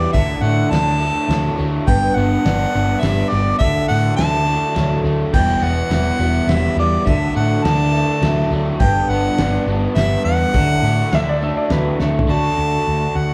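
In a straight-feel three-four lilt, this hopeful, jangly folk rock and heartland rock excerpt is led by an up-front, smooth-topped harmonica melody over a shimmering, octave-doubled twelve-string acoustic guitar with audible finger squeak, a bright, double-tracked overdriven guitar riff, and a round, punchy hollow-body short-scale bass. The dry, cloth-damped drum kit sits in the background with dark cymbals, a fat snare and a tight kick, playing a fill at 12.0 seconds before it stops at 12.3. A clean, compressed lap steel enters with slide and volume swells at 11.1 seconds, and the band plays live together in one large studio room with moderate reverb.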